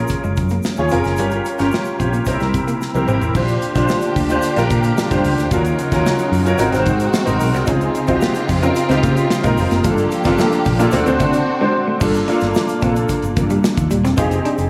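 A straight 4/4 groove from a modern studio drum kit with a punchy kick and bright cymbals, together with a fingered electric bass, anchors this polished 1980s jazz-funk pop passage with an urban, nocturnal mood. A clear, up-front grand piano with ensemble chorus provides accompaniment, while a clean, hollow-body guitar with lush chorus picks a background riff that drops out and returns at 7.7 s, a grainy tube shaker sits quietly behind, and bowed symphonic strings with vibrato and a soft attack hold sustained chords from 3.3 s to 12.0 s. Piano and drum fills lead into the second passage, a brief break falls just before 12.0 s, and the dreamy mix is soaked in plate reverb with small room ambience.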